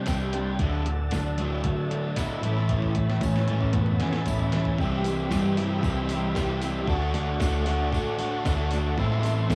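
Lo-fi and homespun, this cut from a longer indie rock piece has the feel of a cassette home recording in a small room, touched by light digital reverb. At 115 BPM in 4/4, the jangly, carefree music rides on an up-front overdriven electric guitar riff with ensemble chorus and a second, hollow-toned overdriven semi-hollow guitar riff, while a dark, round short-scale bass sits underneath and a smooth tonewheel organ with slow rotary speaker holds sustained chords in the background. A detuned 8-bit drum machine with a thumpy kick plays a fill from 2.7 to 4.8 seconds, and a jingly, close tambourine sits low as the chords move from Csus2 through Dadd9 and Aadd9 to Cmaj7, Dmaj7 and Am.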